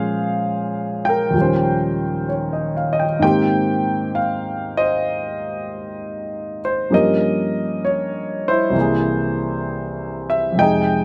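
A solo concert grand piano carries this intimate, romantic jazz ballad, its deep bass and natural, up-front tone placed close enough that the action noise of the keys can be heard. The piece moves at a slow 65 BPM in 4/4 with a swung eighth-note feel, set in Ab major, and the piano ranges from C2 up to G5. A slapback echo trails the piano, while a light reverb adds a touch of space to an otherwise dry, open-air sound. The harmony opens on Bbm9 and Eb13 before settling on Abmaj7 at 3.2 seconds, then turns through Gm7b5 to a Caug7 at 8.8 seconds. Cut from a longer performance, this brief 11-second excerpt has a tender, close-up quality.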